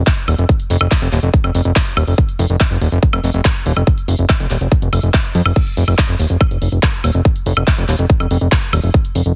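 Psychedelic and intense, this short psychedelic trance fragment, cut from a longer piece, drives at 142 BPM in a straight 4/4, tuned to A4 = 444 Hz. A fat analog bass sits up front from the very start, its thick, nasal tone built from detuned sawtooth and square waves, saturated and evolving, with a fast attack and sustained notes ranging from Eb1 to F2. A punchy, layered electronic kick drum joins at 0.1 seconds, placed just as prominently as the bass and running until 9.0 seconds. Alongside it, a layered big-room dance drum kit adds crash cymbal, handclaps, hi-hat and woodblock, sitting lower in the mix beneath the kick and bass. The whole fragment stays in a single section, heard through a digital ambience with a heavily compressed, radio-like sound.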